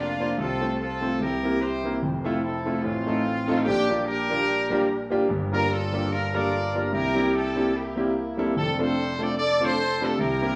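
A clear horn section with vibrato carries the melody, loose and roomy, over a warm concert grand piano with deep bass in this reverent, soulful gospel excerpt in F major, swinging at 147 BPM in 4/4 through chords like Fmaj7, Bb6, Gm7 and C7 before settling on F6, all heard in a rough home demo mix with light studio reverb.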